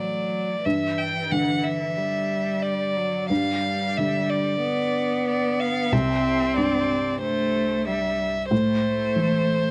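Longing and melancholic, this short neoclassical excerpt for piano and strings moves with a rubato feel in 4/4, the three parts sounding together throughout its 9.7 seconds. A single bowed violin carries the melody up front with a smooth, even vibrato, while a rich solo cello sings a second line beneath it with soft attacks, portamento and expressive vibrato. A felt-muted upright piano gives a mellow, intimate accompaniment in its low register, its short-sustained notes softened by thick felt, all set in a moderate studio reverb as the harmony drifts from A5 through Em7/G and C to a close on Am.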